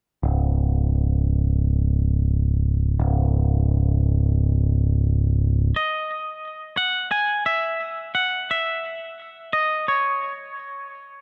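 A dark production with light reverb frames this brooding, cinematic post-rock fragment in C# minor at 87 BPM, where a growling, overdriven picked electric bass sits up front alone on a low C#1 until 5.7 seconds, after which a twangy, scooped electric guitar carrying digital delay takes the melody between C#5 and G#5 from 5.8 seconds.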